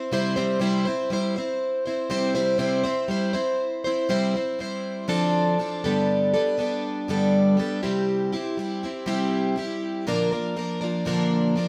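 Warm and nostalgic, this short rock passage is cut from a longer piece and moves at a steady 120 BPM in a straight 4/4, centred in C major. A picked, plugged-in twelve-string acoustic guitar carries it alone from start to finish, sitting up front with a shimmering, octave-doubled ring and the warm sound of fresh strings across its range from G2 to C5. It opens on a C chord, and a new passage begins at 4.1 s, travelling through Dm7 and Gadd9 before returning to C and turning to a Bb at 10.1 s. The guitar's concert character is framed by a wet studio reverb with a 0.7-second tail, and the live-room capture lends the playing an immediate feel.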